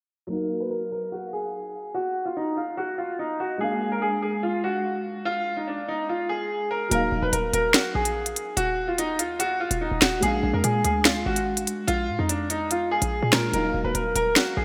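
A clear, open concert grand piano carries the melody up front, its deep bass ringing through a subtle chorus, a low-pass filter and a digital delay. Beneath it, a second, darker grand piano plays mellow, boxy accompaniment thickened by an ensemble chorus and its own low-pass filter. This tense, menacing drill excerpt in a half-time feel opens at 0.3 seconds with the two pianos alone under a filter sweep, circling between two chords. At 6.9 seconds the drill drum kit arrives up front with crisp hats, rim clicks and a sharp, electronic snare, joined by a short, punchy 808-style bass whose tight sine tone and noise layer strike with a fast attack and then decay. A lush hall reverb and small room ambience wrap the mix in a bright 1980s-style digital production.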